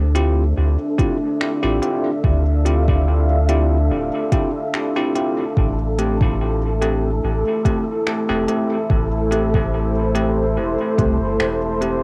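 Hazy and meditative, this ambient dub excerpt settles into a slow, lightly swung groove as a deep, moody pad of detuned chords with chorus and tape haze rests over a soft, round sub bass, while an airy, breathy wind-like noise texture drifts in the background. From 0.2 seconds a bell-like tine electric piano adds clean, bright stabs through a dub echo, joined by finger snaps and crisp hi-hats that also trail dub echo. A deep, layered electronic kick enters at 1.0 seconds, and the whole is carried by the soft grain of a home cassette recording in a lightly reverberant room.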